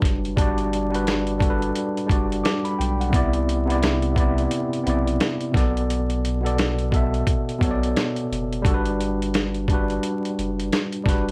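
Nostalgic and cosy, this lo-fi hip hop excerpt moves at 87 BPM in G major with a loose 16th-note swing, its chords drifting from Gmaj7 through Cmaj9 and Bm7 before settling back on Gmaj7 at 8.6 seconds. Up front, a worn, slightly out-of-tune tine electric piano carries the harmony with a light overdrive and a speaker-coloured tone, while a deep, round dub sub bass hums softly beneath it. A dusty sampler-style drum kit with a thumpy kick, medium-tuned snare and hi-hat sounds gritty and compressed, all wrapped in light reverb and a bed of vinyl crackle.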